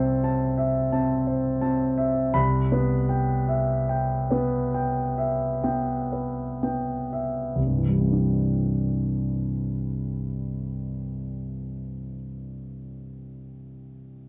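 Hazy and dreamy, this short excerpt of impressionist classical solo piano drifts in a rubato 3/4, its concert grand sounding up front with deep bass, an open tone and long sustain as it slows through the opening seven seconds before settling onto a Cadd9 chord at 7.6 seconds, all wrapped in a moderate studio reverb within a dark production.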